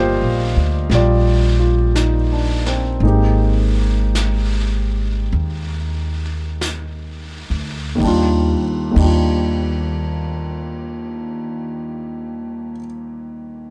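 A slow, intimate jazz ballad in E-flat major, cut from a longer piece, with a romantic mood and a gentle swing that slows down over the first 8 seconds. Up-front concert grand piano with deep bass, long sustain and audible action noise carries the harmony from Ebmaj9 to Abmaj9 and back, beside a woody pizzicato upright bass, while a dark, smooth brush kit with dark cymbals and a rolled-off top sits low in the mix from 0.9 to 9.2 seconds. Light reverb gives the small group a natural studio-room feel, and the piano rings on alone after the bass stops at 12.7 seconds.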